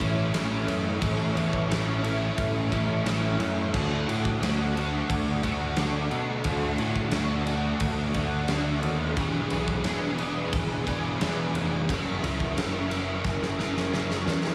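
A dark, overdriven electric guitar riff, double-tracked with an ensemble chorus and sitting up front, opens this wistful, hazy shoegaze and dream pop passage together with a growly, direct picked bass and a big acoustic rock kit with a fat snare, tight kick, crash and ride in a stone-room sound. The harmony moves from A6 to D, then E7 and F#7, with the whole mix soaked in a huge, dreamy reverb. A drum fill arrives at 13.2 seconds, and the fragment breaks off mid-piece.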